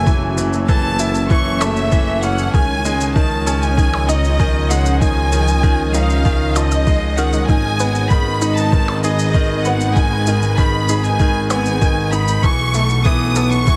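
Set in a small room's reverb, this cut from a longer piano and strings electronica piece feels cinematic and melancholic, moving at 97 BPM in a straight 4/4. An electronic kick and electronic shaker and percussion blips both enter at 0.1 seconds. The kick is compressed, pitched down and up front with a muffled, tape-warm thump, and the blips were re-recorded in a large room. A brilliant, intimate baby grand piano plays a polished riff with audible action noise and short sustain, while a bowed double bass section carries the bass line with biting vibrato and sidechain pumping. A rich symphonic violin section sings the expressive, close melody over a thick, airy unison pad of detuned sawtooth and square waves, which holds sustained chords in the background with chorus, and a very quiet analog pluck, round and nasal with a wave-folded filter edge, adds arpeggios. The harmony moves from F#m7 through C#add9 and G#m to B7sus4.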